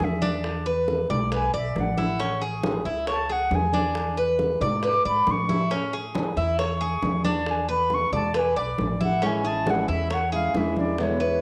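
An airy, soft-attacked concert flute carries a sunny, danceable Cuban son and guajira melody from the start, over metallic, double-stringed tres arpeggios sitting up front, a woody, thumpy pizzicato upright bass, ringing congas played with soft hands, and tight, high-tuned bongos set distantly in the background. At 9.2 seconds a fingerpicked steel-string acoustic guitar with fresh strings joins up front as accompaniment, while the harmony moves between Amaj7, E7 and E5. The flute, tres and guitar carry a cassette-tape tint, and a moderate spring reverb and small room surround this home recording on cassette.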